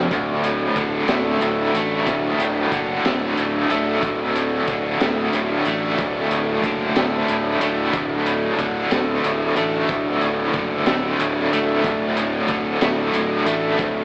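Kaleidoscopic and hypnotic, this psychedelic rock excerpt in D major rolls along at 61 BPM in 6/8, with a biting, double-tracked overdriven guitar riff with tremolo up front, a punchy fuzz bass underneath, a crunchy, gritty breakbeat kit with a high-tuned snare and tight kick, and a clear tonewheel organ holding sustained chords through a slow rotary speaker in the background, all blurred into a dreamy, reverb-soaked mix with an AM radio sound.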